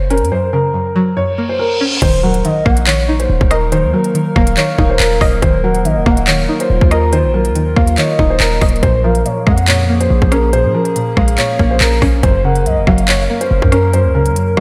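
A half-time 4/4 pulse at 141 BPM drives this menacing, cold drill piece, where an up-front electronic kit of hard-clipped kick, crisp hats, handclaps, rim clicks and crash sits over a punchy, heavy sine 808 bass, while a boxy dark grand piano carries the melody through diffuse ambient delay beside a twangy string-like resonator pluck with chorus, a reverse cymbal gives way to an impact at 2.0 seconds, and a warbling lo-fi pad with phaser and a smooth gliding lead in the background join in a dreamy hall reverb over chords moving from Gb to Ebm and Bbm7.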